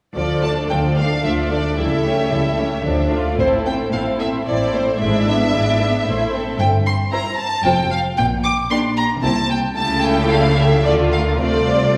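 A wet recital-hall reverb with a 1.7-second tail fills this stormy, dramatic excerpt of a quick classical-period movement in D minor, played at 112 BPM in 3/4 with a rubato feel. The warm first violins carry the melody up front with a soft attack and expressive vibrato, while a focused second violin line sits below them and the smooth, even violas supply the accompaniment. Intense cellos in the background and lush double basses anchor the bass as the full string section plays from 0.2 to 12.0 seconds, moving from D minor through A minor before returning to D minor.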